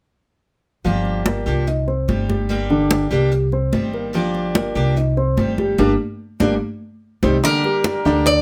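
A dark, mellow grand piano with audible action noise plays arpeggios over a woody, thumpy pizzicato upright bass, ringing close congas and a bright parlour steel-string guitar in this nostalgic, sultry Cuban son and guajira fragment at 146 BPM in G minor, moving between Gm and Cm with a band accent from 5.8 seconds, before a metallic, double-strung Cuban tres takes the melody and very quiet, round bongos join at 7.4 seconds, set in a moderate studio reverb.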